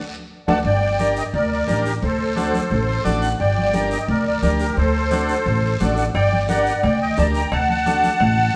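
A straight 4/4 cumbia groove at 175 BPM drives this fiery, passionate excerpt in G harmonic minor, with thick-skinned congas played by soft hands sitting in the background beside a raspy, close guiro. A woody, growly pizzicato upright bass stands up front, anchoring the low end as the harmony moves between Gm and D7. Over it, a reedy musette accordion carries the melody with a shimmering tone, while a vintage, buzzy overdriven combo organ with light vibrato supplies the accompaniment and slips in a short fill at 2.7 seconds. The band opens with a shared accent, and timbales and cowbell ring briefly with a metal-shell bite before returning at 6.1 seconds. The players perform live in a single stone room whose wet reverb gives the music a lively, open air.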